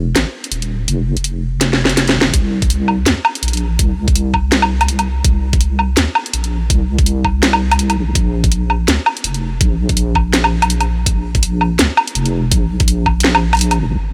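A dry, up-front mix carries this tense, cinematic half-time drum and bass cut at 165 BPM with a 16th-note swing, where a deep, dark wobble bass with chorus sustains from Eb1 to Eb2 beneath a layered electronic kit of cracking snare, bright low-passed hats and woodblock, while a knocking electronic kick enters at 2.3 seconds after a drum fill.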